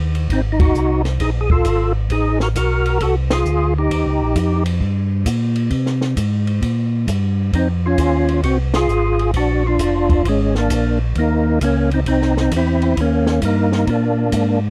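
A swung 4/4 groove drives this bluesy, soulful soul jazz organ trio, with a compact cocktail drum kit's punchy kick, high-tuned snare, hi-hat and dark ride cymbal supporting a round, mellow tonewheel organ that carries the bass line through chorus vibrato and a slow rotary speaker. Up front, a fat, lightly overdriven lead organ with key click and third harmonic percussion states the melody, pausing at 4.6 seconds and returning at 7.5, while the band hits a shared accent at 8.7. The dry, close 1970s-style studio sound keeps the piece intimate, and it is cut from a longer performance.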